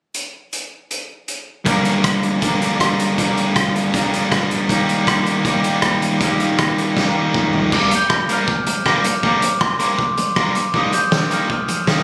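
Indie rock in G minor at 158 BPM, this bittersweet, cool fragment of a longer piece moves in a straight 4/4. A loose indie drum kit opens alone at 0.1 s with kick, snare, hi-hat, rim click, toms and crash, its dark cymbals, fat snare and tight kick sounding roomy yet up front, with a rolled-off top. A bright, compressed fuzz guitar riff enters at 1.6 s, picked and distorted, ranging from G2 to Bb4 over a Gm to Eb progression. After a drum fill from 7.0 to 7.7 s, a glockenspiel played with rubber mallets joins at 7.8 s, its mellow, bell-like melody ringing between C6 and G6 through tape echo. The whole recording was captured on a phone in the room and dressed in a moderate studio reverb.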